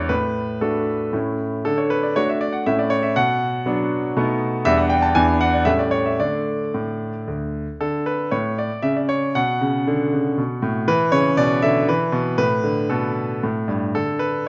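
A polished concert grand piano plays alone from the start, carrying a graceful, playful classical-period sonatina in D major, in 3/4 at roughly 110-122 BPM with a rubato feel. Its clear upper notes ride over a deep bass reaching down to D2, moving through chords such as Bm, B7, Em7 and A7 before settling on D around 6.2 seconds, after which the opening phrase returns at 7.8 seconds and touches a Gsus2 color near the end. The instrument sits up front in a moderate recital hall reverb, in a short passage drawn from a longer piece.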